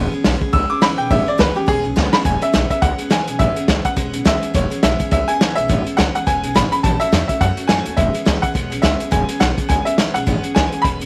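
Swung eighths in 4/4 drive this rowdy, upbeat rockabilly cut from a longer piece, with a muffled, lo-fi vintage drum kit up front, its punchy kick and medium-tuned snare heard through a rolled-off top. Thumpy pizzicato upright bass on gut strings and a picked steel-string dreadnought acoustic guitar fill out the accompaniment in a studio ambience. A brilliant, woody upright piano with short sustain carries the melody from 0.5 seconds, taking a solo turn before a drum fill at 2.0 seconds leads into the next section.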